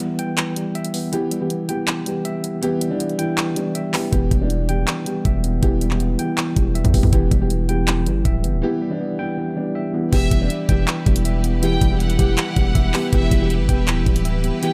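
A distorted 808-style bass, heavy and aggressive with a fast attack, drives this brooding, menacing trap excerpt in E minor at 160 BPM in a half-time feel, entering at 4.1 seconds over an up-front trap kit with a knocking kick, bright hi-hats, handclaps and crash cymbal. A worn, slightly out-of-tune tine electric piano plays arpeggios through overdrive, filtering and delay, joined at 1.1 seconds by a dark, boxy concert grand piano in the accompaniment. At 10.1 seconds the music shifts to a new section as a focused, distant violin section adds a lush second line with delay and a close, intense symphonic string section holds sustained chords, all in a small room ambience.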